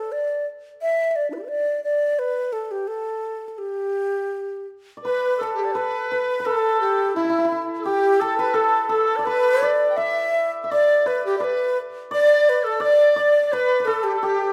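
Festive and pastoral, this rubato Chinese traditional chamber fragment opens with a breathy, end-blown low xiao carrying the melody up front with a crisp attack and straight tone, joined at 5.0 seconds by a bright, buzzing large dizi with vibrato and a tongued, unsteady delivery and a shimmering, ringing hammered dulcimer on second lines, heard in the moderate reverb of a recital hall.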